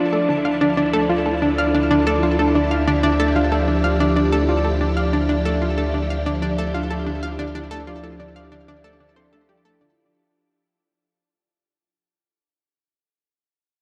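Mysterious and hypnotic, this fragment of sequencer-driven ambient space music moves at 93 BPM in D minor over a single Dmadd9 chord, with a swirling, vintage string machine fading in beneath a bright, up-front analog pluck riff thick with chorus and delay, ringing thumb-plucked harp arpeggios that linger until 12.3 seconds, a deep, round analog bass holding D2, and a very quiet, pulsing gated texture, all set in a dark, warm production with shimmer reverb on the strings, harp and pluck.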